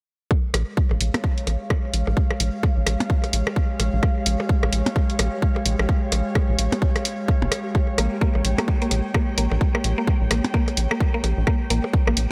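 A punchy, layered electronic kick, delayed percussion blips and claves with a tape-warm edge, and an airy, breathy pad open this hypnotic, quirky slice of minimal techno, cut from a longer piece and running at 129 BPM in 4/4 with a 59% swing on the sixteenths. The rubbery square-wave bass arrives almost at once, hollow and bouncy, moving between F1 and Bb1 under a filter sweep while sidechain pumping makes it breathe. An analog-flavoured electronic hi-hat sits up front beside the kick and bass. The chorused pad ranges from Ab3 to G5 over a single Bb minor chord in Bb dorian, and a very quiet, flickering granular texture on G4 slips in at 1.6 seconds. At 8.0 seconds a woody, round, mallet-like FM pluck on Bb3 enters as a riff, carrying chorus, delay and the same pumping. Light reverb and a bright 1980s-style digital production frame the track.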